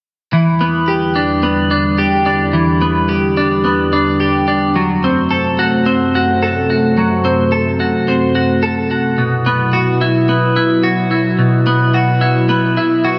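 Awash in a lush hall reverb with a big arena sound, this melancholic, cathartic rock excerpt in E minor at 108 BPM sets a bright, twangy, up-front twelve-string electric guitar picking clean arpeggios through lush chorus and tape echo from 0.3 seconds over an airy, breathy pad of detuned, ring-modulated sustained chords with a soft, slow attack that joins at 0.7 seconds, moving from Em7 through F#dim to Bsus4.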